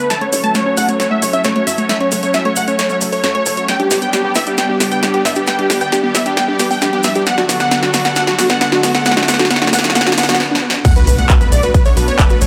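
A huge, detuned supersaw carries the soaring, bittersweet melody of this uplifting trance build, pumping with sidechain compression, dub echo and a low-pass filter, while a very quiet, bright plucky lead plays a second line over a chorused vintage pad, a wave-folded arpeggiated pluck under a filter sweep, and a tight sawtooth sequencer bass. An analog drum machine with snare, handclaps, hi-hat and crash, along with a grainy cabasa, drives the build-up and drum fill; a riser and impact effect enters at 4.9 seconds, and after a brief break the drop lands at 10.8 seconds with a layered, up-front electronic kick over a Bm7 chord. The harmony moves from F#m through G and D beforehand, set in light reverb with digital ambience.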